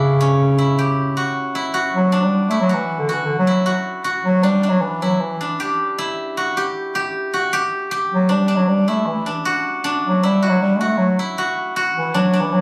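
In a straight 5/4 at 156 BPM, this bright, intricate progressive instrumental excerpt in D major has a warm, up-front bass clarinet singing a classical-style melody bathed in plate reverb, taking a solo from 1.7 seconds, over silvery, ringing arpeggios from an acoustic steel-string zither played with fingerpicks, all heard through the roomy club ambience of a phone recording as the chords move from C#dim through D and G5 back to D.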